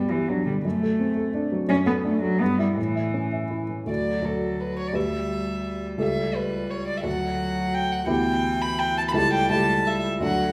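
A wet scoring-stage reverb surrounds this cheerful, spirited excerpt from a quick classical-period movement for piano trio in D major, taken at 170 BPM in 3/4 with a rubato feel. A warm, present baby grand piano carries the accompaniment from the start, alongside a single bowed cello playing a second line sul tasto, its tone rich, pure and softly attacked, distant and floating. At 3.9 s a single bowed violin enters up front with the melody, sharing that same sul tasto colour, as the harmony cycles through D, Em7/D and A7/C#.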